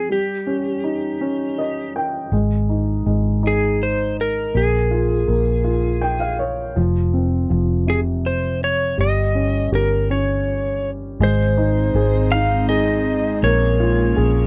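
A clean, slide-played lap steel guitar carries the melody with volume swells in this tender, romantic pop excerpt in 6/8, set over a dark, woody upright piano that adds short fills at 1.2 and 5.7 seconds. A round, punchy, foam-muted electric bass joins at 2.3 seconds, and an airy, breathy pad with chorus softly sustains chords from 11.5 seconds. The sound is dry and close, like a 1970s studio recording.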